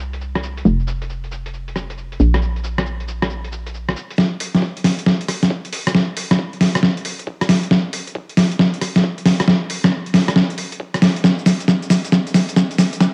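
A hollow, knocking FM bass opens this bouncy, skippy two-step UK garage cut at 136 BPM with swung 16ths, punchy and up front until 3.9 s, while an up-front, pitched-down boom bap sampler-style kit of cabasa, hi-hat, rim click and a medium-tuned snare plays on with overdriven grit, filtered hats and cassette-tape haze, and from 4.2 s a very quiet, thumpy electronic kick joins a drum fill that builds to the end, inside a moderate spring reverb with a home-cassette character.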